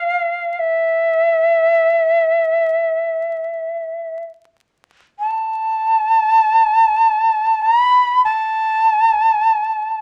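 Solitary and still, this short excerpt of Japanese traditional chamber music features a lone end-blown bamboo shakuhachi, airy and bright with tongued notes and vibrato, sitting up front in a modest small-room reverb over a bed of vinyl crackle.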